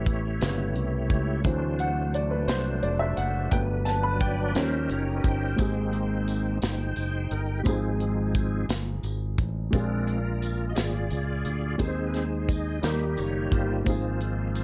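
A dark, warm small-room sound frames this uplifting, soulful slow gospel excerpt in 6/8 at 58 BPM, where a baby grand piano leads over organ, punchy acoustic drums and an up-front fingered electric bass before a reedy, key-clicking tonewheel organ with slow rotary speaker and light overdrive takes the solo at 5.6 s, as the harmony settles into Ab major and a jingly tambourine joins in the background.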